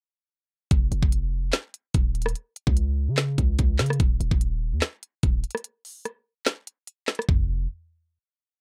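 Trap-flavored hip hop in a dark, brooding mood, this short, complete piece moves with a heavy half-time feel. From 0.7 seconds, an electronic trap drum kit and a warm 808-style bass arrive together, sitting up front in a dark, warm production with little reverb. The kit pairs a knocking kick with a woody snare layered with handclaps, crisp hi-hats that break into fast rolls, and touches of rim click and toms. The deep, boomy, warm bass is sine-based with a noise layer, its fast attack decaying into long sub-bass notes that follow the kick and bend through pitch slides. A break at 5.6 seconds interrupts the hook, and from 7.3 seconds a final note rings out as the piece closes.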